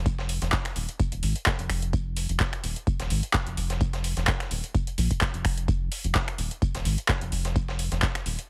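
A round, dark analog bass sits up front in this hypnotic, raw acid house cut, its deep, sine-like tone hitting with a fast attack and sustaining low between Eb1 and Bb1, pumped by sidechain compression from 0.0 seconds. At 128 BPM in 4/4 and F minor, the groove carries a light swing on the 16ths. A deep electronic kick drum joins at 0.1 seconds, alongside a gritty, sampler-style breakbeat kit whose high-pass filtered hi-hat and high-pass filtered, medium-tuned snare sit lower in the mix with a tape-warm edge. From 0.3 seconds a booming analog drum machine adds metallic hats, finger snaps and handclaps, placed up front. The mix is dry, with little reverb and a heavily compressed, radio-like sound, and this short passage is cut from a longer piece.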